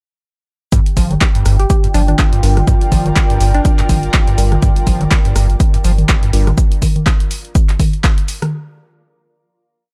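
Acid house with a trippy, hypnotic pull, built on an up-front overdriven four-on-the-floor kick, a punchy analog drum machine with hats, claps, rim clicks and congas, and a very quiet, gritty sampler-style breakbeat kit with snare and shaker, all running through a single Gm7 groove. A squelchy, resonant acid bass riff with accents and slides pumps against a round, tube-saturated sine sub bass playing off the beat, while a dark, detuned analog pad holds a high note in the background and a blurred granular cloud pad drifts in at 1.9 seconds with slowly shifting chords. A hollow, bouncy square pluck with tape echo adds short answering phrases from 1.6 to 4.2 seconds, and a mellow tine electric piano drops sparse, phased chord stabs, with the drums carrying on alone to the end at 8.5 seconds.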